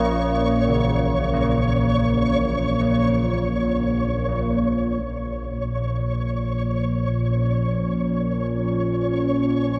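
A warbling, vintage analog drone sits up front in this cavernous, dark ambient piece in Bb minor, holding low in free time with chorus and a filter sweep while a grainy, flickering high texture glimmers through its own reverb. Old church bells ring out bronze, clangorous arpeggios through tape echo until 6.6 seconds, and at 5.0 seconds a detuned, wave-folded pad enters with sustained chords, colored by chorus and phaser. The whole fragment, cut from a longer work, is bathed in a vast, echoing reverb.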